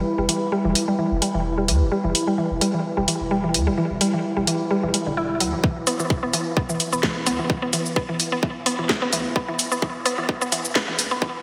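A punchy, pitch-dropping sub bass and a deep, moody detuned pad open this sparse, quirky minimal techno excerpt in E minor at 129 BPM with a light 16th-note swing, soon joined by a woody, round FM mallet pluck treated with chorus, phaser and delay, and an up-front garage kit of cracking snare, hi-hat and shaker, while all three synths pump against the sidechain, a filter sweep builds tension across the whole passage, a tight electronic kick arrives at 5.6 s, and a lush hall reverb soaks the mix in a dreamy haze.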